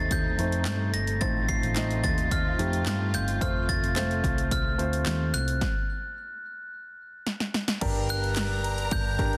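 A straight 4/4 pulse from a punchy, up-front electronic house kit of kick, snare, handclaps, hi-hat, ride and crash drives this dramatic, piano-driven pop fragment, with a dark, round hollow-body electric bass underneath and a sparkling, bell-like glockenspiel carrying the melody over a clear, intimate grand piano whose action noise is audible. Lush bowed strings sit in the background until a stop at 5.6 seconds, and a drum fill at 7.3 seconds leads into a new section where a focused violin section enters with a second line at 7.8 seconds. The mix carries light reverb and a dense, heavily limited modern master.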